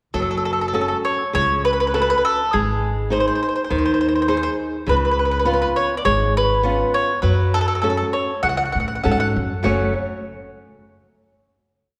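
Italian folk serenade in F# harmonic minor at 101 BPM with a rubato feel, passionate and wistful, where a woody, double-strung picked mandolin carries a hook-driven motif melody up front over fingerpicked flamenco guitar playing oompah bass notes and chord figures and a thumpy pizzicato upright bass in a two-feel of root and fifth, moving through F#m, G#, C#7 and back to F#m before a final chord at 9.6 seconds rings out in the lush reverb of a church or concert hall.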